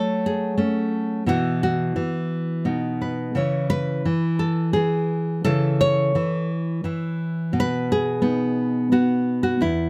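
A close, detailed recording with light reverb puts a full-bodied nylon-string guitar up front, its deep classical tone fingerpicked across a span from E2 to C#5. This short folk piece, cut from a longer work, moves in 3/4 with a nostalgic, pastoral mood, the solo guitar carrying everything through F#m, Bsus4, B and C#m before settling back on B at 7.5 seconds.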